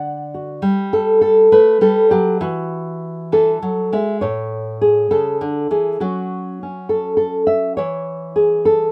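Folk for solo nylon-string guitar, this short fragment from a longer piece moves in a gentle, nostalgic, straight 6/8, the thumb-plucked strings sounding dark and deep with a classical cast and sitting up front in a dry, rough home-demo mix. Its chords drift from D through Gadd9 and Esus2, then a second section from 4.2 seconds turns to A, F#5 and E before the fragment closes at 8.9 seconds.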